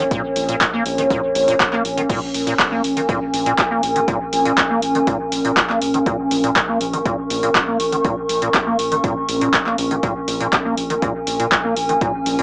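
Hypnotic and raw, this 12.4-second acid house excerpt holds a straight 4/4 groove at 121 BPM in Bb minor, tuned slightly flat and resting on a single Bbm7 chord throughout. A rubbery, resonant acid bass riff with a filter sweep runs the whole span between Bb2 and Bb3, colored by ensemble chorus, tape echo and cassette grit, while a round analog bass sits underneath on a low Bb1 with sidechain pumping. Up front, a warbling, detuned pad between Db4 and Db6 supplies a nostalgic, mellow texture with slow attack, long release, chorus, built-in reverb and its own sidechain pumping. An electronic kick drum and a punchy analog drum machine with crash cymbal, handclaps and hi-hat enter at 0.1 seconds, both tape-warmed and re-recorded in a small room, with the kick stopping at 12.1 seconds. The whole piece has a lo-fi home-cassette character, heard through a small speaker in a short, wet booth ambience.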